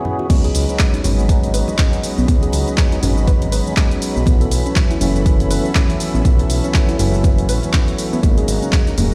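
Deep house at 121 BPM in C# minor, this hypnotic, moody excerpt rides a 16th-note swing and drops in at 0.3 seconds, when the deep, layered kick, smooth sawtooth bass and punchy analog drum machine arrive together. The drum machine sounds dry and overdriven, supplying crash cymbal, handclaps, hi-hat and shaker, while low-tuned, thick-skinned congas sit close but very quiet from the opening. A fat tonewheel organ carries the stabs with light overdrive, chorus vibrato, key click, a slow rotary speaker and delay, over a detuned, slow-attack analog pad holding sustained chords. A soft, round pluck with a dark, filtered decay spins arpeggios in the background through chorus and delay from 0.2 seconds. The pad, organ, pluck and bass all pump against the kick as the harmony moves from C#9sus4 to B9sus4 and then G#9sus4, and the whole mix rings in the stone reverb of a bare room heard through a big sound system.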